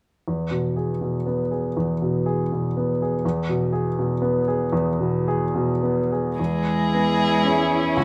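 Tender and lyrical, this slow romantic movement for piano quartet unfolds in E major and 6/8 at around 35-42 BPM, with a flexible rubato feel; it is cut from a longer piece. A clear, intimate baby grand piano plays the accompaniment alone from 0.3 seconds, sitting up front with long sustain and audible action noise in a light reverb. At 6.4 seconds the strings enter: a warm, expressive violin carries the melody close and up front with vibrato and portamento, a rich, even cello adds a smooth second line from further back, and a dark, distant viola joins the accompaniment.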